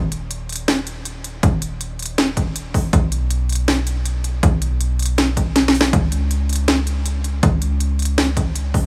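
A dry, close, small-room sound frames this lush, bright future bass excerpt at 160 BPM in a half-time feel, tuned to A4 = 439 Hz, where a deep, boomy 808-style sine bass with a noise layer and fast attack pumps under sidechain while an up-front trap kit of sharp snare and crisp hi-hats is joined at 1.4 seconds by a punchy, layered electronic kick that drops out from 5.6 to 5.9 seconds for a drum fill.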